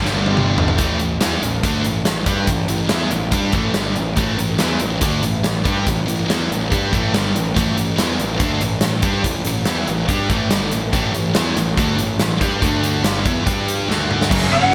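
A very quiet, shouting tonewheel organ on slow rotary speaker opens this energetic, swaggering hard rock excerpt alongside a heavy high-gain guitar riff, an overdriven semi-hollow guitar with analog chorus, and a dark, round fuzz bass, with a drum fill from a huge arena kit entering a moment later. The organ drops out after 0.8 seconds, leaving the heavy guitar, with its searing distortion, and the semi-hollow guitar, hollow-toned in the background, to drive the riff over the punchy, overdriven bass. The drums sit up front, with bright cymbals, a medium-tuned snare, a punchy kick and a pumping room sound, and the riff moves through G5 and A5 before turning to D5, G6 and G5 near the close. Another fill at 13.9 seconds leads into the return of the organ, along with a crunchy, double-tracked guitar with subtle chorus. Two lead guitars through a small cranked amp appear only in the final moments: a lo-fi melody up front and a second line in the background. 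A moderate, lush hall reverb and bright 1980s-style digital production give the whole a big, arena-sized sheen.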